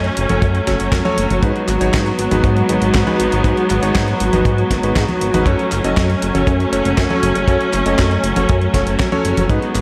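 A lush, bowed studio string section holds sustained chords up front in this danceable, nostalgic italo disco fragment, shifting from F#m to G#m7 and back to F#m. A clangy, vintage electric grand piano adds stabs trailed by a diffuse ambient delay, while a glossy, chorused synth bass with a filter pluck carries the low end. A sampler-style drum machine supplies congas, handclaps, hi-hat and a fat snare, joined at 0.4 s by a tight, dry kick, all set in a dreamy hall reverb with vinyl crackle.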